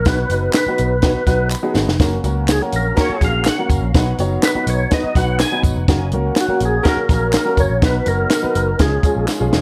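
A straight 4/4 groove at 124 BPM drives this joyful, uptempo 1960s-style soul excerpt in F# major, where a fat, lightly overdriven percussive tonewheel organ with key click, chorus vibrato, slow rotary speaker and analog delay carries the melody over a dark, round, foam-muted picked electric bass and a punchy, up-front compact cocktail drum kit with a high-tuned snare, while a woody upright piano supplies accompaniment and a fill at 1.0 seconds, close, dry tambourine and handclaps sit in the background, a clean, very quiet tonewheel organ holds sustained chords from 2.0 seconds, and a tight horn section with vibrato adds brief second-line phrases from 3.0 seconds, all set in a light reverb.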